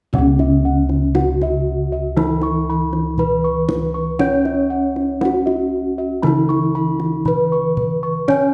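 Ceremonial and serene, this brief excerpt of Javanese gamelan moves at a stately 59 BPM in a straight 4/4, tuned slightly above standard pitch with A4 at 441 Hz. A bronze metallophone carries the melody between C#4 and C#5, struck with padded disc mallets for a mellow, soft ring, while a second metallophone plays accompaniment an octave lower, its horn mallet drawing out a dark, smooth tone. Both share paired tuning, so their sustained notes carry shimmering beats. Bossed gongs spin high arpeggios with an airy, round quality, and a lower set of bossed gongs anchors the bass across a broad span from C#2 to C#5. A kendang adds tight, soft-handed drumming with a live-room feel, sitting low in the balance alongside the arpeggiating gongs. All five parts play together throughout the 0.1 to 8.5 seconds, bathed in a moderate recital-hall reverb that lets the bronze tones bloom.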